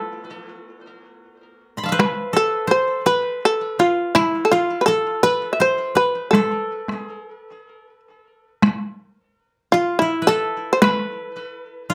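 A buzzing, powerful plucked shamisen carries the melody up front over a quieter, woody koto second line touched with tape echo in this austere, meditative passage of Japanese chamber music, cut from a longer piece and moving at a free, rubato 55 BPM in 2/4 on an A hirajoshi scale, with a taiko ensemble struck with heavy sticks joining prominently in a live room at 2.0 s before the music shifts into a new section at 8.6 s.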